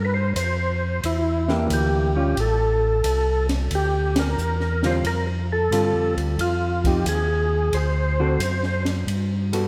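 Soul jazz organ trio excerpt at 89 BPM with a swung, soulful and bluesy feel, where a full, percussive tonewheel organ carries the melody over a round, dark organ bass line, both lightly overdriven with chorus vibrato and slow rotary speaker, while an acoustic drum kit with a high-tuned snare and boomy kick joins at 0.4 seconds, a clean, fingered hollow-body electric guitar adds shadowy accompaniment from 1.5 seconds, the band hits an accent at 4.0 seconds, and a moderate echo chamber reverb places the group further back in the room.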